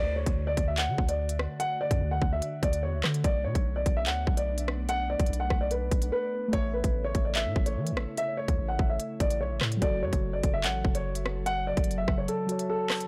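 An up-front drill kit of crisp hats, handclaps, rim clicks and hard-clipped kick drives this cold, menacing half-time hip hop excerpt, joined by a dark baby grand piano melody with digital delay, a deep sine 808-style bass, a glassy FM pad with ensemble chorus sitting in the background, and muted felt-like synth keys entering at 6.5 seconds, all in a dry, blown-out, overdriven mix where the drums drop out briefly at 6.1 seconds and the kick falls away from 12.3 seconds.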